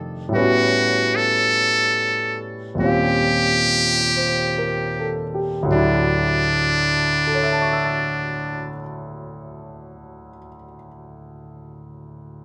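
Jazz in a tender, romantic slow swing, where a buzzy, brilliant trumpet with metal mute carries the up-front solo melody from 0.3 to 8.8 seconds over a warm concert grand piano with deep bass and audible action noise, the tempo easing back through the opening 5.7 seconds as the harmony moves from A13 and Eb13 to a settling Dmaj9 in a moderate large-studio reverb.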